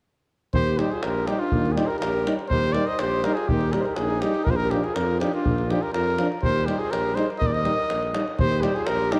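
Drenched in a dreamy plate reverb, this exuberant, virtuosic Balkan brass band excerpt in 2/4 puts a close-miked trumpet with light vibrato and tape echo up front on the melody, sets a mellow alto saxophone with a soft attack on a second line in the background, fills the accompaniment with a distant, roomy euphonium and a smooth-topped trombone, anchors the bass with a tuba carrying light vibrato, and adds a tight davul heard from a large room, while the classical-style winds move from Eb to Bb and back.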